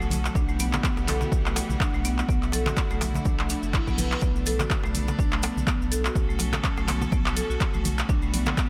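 This hypnotic, driving afro house excerpt has a close, dry studio sound, opening on a woody, hard-mallet marimba playing arpeggios with tape echo over distant, bright chamber strings holding sustained chords and a round, deep analog bass, all three pumping against the sidechain. A punchy, overdriven electronic kick arrives at 0.4 seconds beneath a layered deep house kit of handclaps and hi-hat, while congas, grainy maracas and a clay-shelled darbuka struck with hard hands sit in the background. A reverse cymbal rises at 3.6 seconds as the chords move from Emadd9 through D, Bm7 and F#m.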